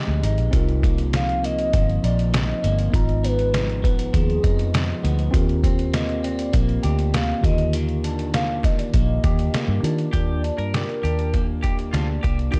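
A soft, woody, clarinet-like synth lead carries the melody from the start of this sunny, laid-back indie bedroom-pop excerpt in Eb major at 100 BPM, treated with analog chorus and delay. It floats over a slightly broken-up guitar through a small old amp and a worn, slightly out-of-tune electric piano, while a dark, round, foam-muted bass and a muffled, pitched-down sampler-style kit with a thumpy kick and fat snare sit up front through chords such as Fm9, Cm7, Abm6 and Ebmaj7. At 10.1 seconds a bright, clean semi-hollow guitar adds a quiet second line, and the whole recording stays dry and gritty with little reverb.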